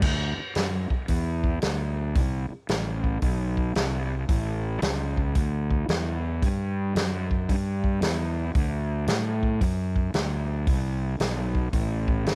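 A lightly reverberant, up-front recording of raunchy, gritty blues rock with a southern rock swagger and a swung feel, cut from a longer piece, where a growly, fuzzy, overdriven fingered electric bass rumbles low alongside a vintage acoustic drum kit with a punchy kick, medium-tuned snare, hi-hat and dark crash cymbals, both playing together throughout.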